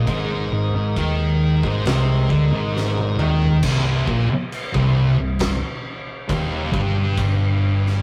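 A rough rehearsal-room recording with warm saturation and light reverb carries this heavy, hypnotic stoner and doom metal passage, cut from a longer piece. Two thick fuzz guitars grind through a low distorted riff, one up front and the other darker, over an overdriven, round fingered bass and an oversized low-tuned acoustic kit with a punchy kick, fat snare, dark cymbals and a pumping stone-room sound. A piping, scooped tonewheel organ holds chords through a slow rotary speaker until 3.6 seconds, where a drum fill starting at 2.7 seconds hands the riff over to a C minor section.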